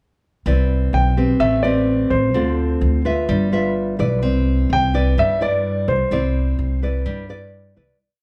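A concert grand piano with deep bass and short sustain plays hook-like motif phrases from 0.9 s in this relaxed, sophisticated bossa nova in C major at 127 BPM, over a classical nylon-string guitar's thumb bass and syncopated plucked chords and a woody, thumpy pizzicato upright bass playing dotted roots and fifths through Cmaj9, Am9, Dm7 and G6, all set back in a moderate studio reverb before fading out from 6.1 s.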